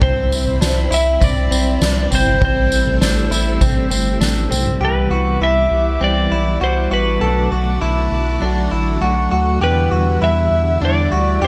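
A straight 4/4 pulse at 100 BPM from a soft-mallet drum kit with a fat snare and boomy kick drives only the first 4.8 seconds of this melancholic, hazy dream pop excerpt, under a round, deep analog bass, a dark, slightly broken-up electric slide guitar melody with delay, bright, compressed arpeggios from a direct-recorded clean electric guitar drenched in lush chorus and delay, shimmering vintage string-machine violins holding sustained chords, and a glassy texture of drifting overtones that hovers in the background from 0.3 to 9.9 seconds, while a mellow, clean, fingered electric guitar with tremolo takes up accompaniment at 4.8 seconds, all within a moderate spring reverb and small room ambience.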